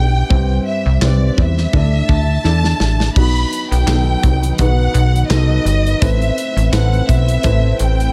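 This short, dramatic and bittersweet piano-driven pop fragment opens with a bowed studio violin section carrying the melody, lush and expressive with vibrato. Beneath it sits an intimate, woody upright piano with audible action noise, and an up-front analog bass with a punchy, funky filter pluck. An acoustic studio drum kit joins at 0.3 seconds, with a punchy kick, a medium-tuned snare, hi-hat, handclaps and crash cymbal, its top end rolled off. The tempo is 84 BPM in 4/4 with a light sixteenth-note swing, and a drum fill from 2.4 seconds leads into a new section where the harmony moves from Cmaj7 and Dsus2 to B and Amadd9. At 3.1 seconds a thick, detuned unison pad enters in the background, bright and slow to bloom, colored with chorus and phaser. The whole piece sits in a small room ambience that gives it a close feel.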